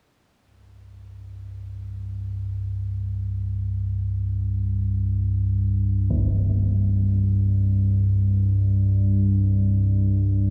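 Unsettling and dark, this short cut from a longer dark ambient drone piece drifts in free time, tuned to A4 = 442 Hz and opening on a C5 chord as a gradual fade-in on impacts and reversed cymbals builds across the passage. A deep, rumbling drone enters at 1.3 seconds and sits up front in the low register, its detuned blend of triangle and sawtooth tones rising on a slow attack and holding as a sustained, ominous bed with a long release and its own built-in reverb. At 6.1 seconds a huge, shadowy impact strikes briefly beneath it, low-pass filtered and set further back in the mix. A light studio reverb surrounds the whole, leaving a close, intimate sense of dread.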